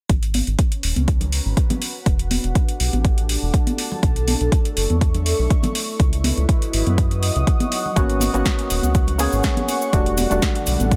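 A lightly swung 4/4 groove at 122 BPM drives this deep, late-night deep house excerpt, built on an overdriven, up-front electronic kick and a layered drum kit of punchy snare and metallic hi-hats, with soft-handed congas, a round, dark analog bass under a filter sweep and sidechain pumping, a moody, detuned ambient pad entering at 1.5 s over G#m11, Em11, Bm11 and C#m11 chords beside an airy, breathy, ring-modulated pad, and from 8.0 s a hollow, mellow organ stab with lush chorus and tape echo plus a grainy cabasa in the background.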